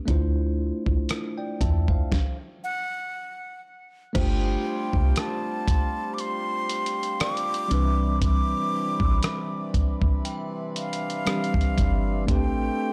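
A breathy, close-miked concert flute carries the melody from 2.6 seconds in this romantic, dreamy contemporary R&B excerpt, sitting up front over a bell-like tine electric piano, a woody, round FM bass and a dusty, gritty sampler-style drum kit with a thumpy kick. After a stop between 2.1 and 4.1 seconds, a reedy pedal harmonium adds full sustained chords, while an inharmonic synth chime with chorus and delay rings in the background, and the flute also carries delay. The production is dark with little reverb, and the harmony moves through ninth and eleventh chords over a gently swung sixteenth feel.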